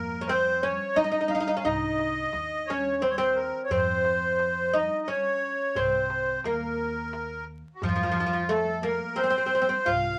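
In a straight 3/4 at 88 BPM, this hypnotic, longing Arabic maqam ensemble piece in F hijaz unfolds as a brief fragment of a longer work, with a reedy, sweet accordion carrying the melody up front, its light tremolo tuning lending an airy shimmer. Close beside it, a fretless oud plucked with a plectrum adds a woody, deep second line from its doubled strings. Underneath, a pizzicato upright bass with steel strings gives warm support, while a very quiet clay-shell darbuka, played with soft hands, enters at 0.3 seconds and sits close and dry, all framed by moderate studio reverb and a layer of vinyl crackle.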